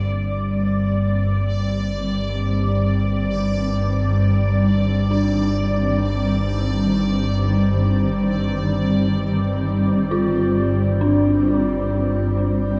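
Desolate and dark, this free-time ambient passage is cut from a longer piece and sits inside a huge, wet reverb with a cassette-tape character and a hint of small-room ambience. An up-front analog drone anchors the low end, its detuned sawtooth and pulse-wave tones mellowed by chorus and shaped by a filter sweep that runs through the whole 12.8 seconds. Above it, a granular cloud pad holds blurred, full-bodied sustained chords built on an Ebadd9/G harmony, bathed in shimmer reverb. A faint bubbling texture of resonant, randomly stepping filter movement hovers in the upper register, quiet in the mix throughout. At 5.1 seconds an eerie, inharmonic FM bell enters with warbling, vintage arpeggios that decay into a diffuse ambient delay.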